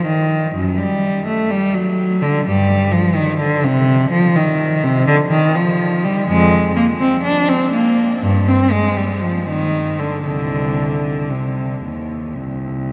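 A rich, bowed cello sounds alone from the first moment, played by one player close and up front with smooth, even tone and vibrato, ranging from C2 to D4. This solemn, introspective baroque-style suite movement moves in a rubato 4/4 at around 57-64 BPM, settling into C minor from 6.3 s. A huge, wet reverb with a 7.7-second decay places the playing in a vast, echoing space, and the passage is cut from a longer piece, ending at 12.9 s.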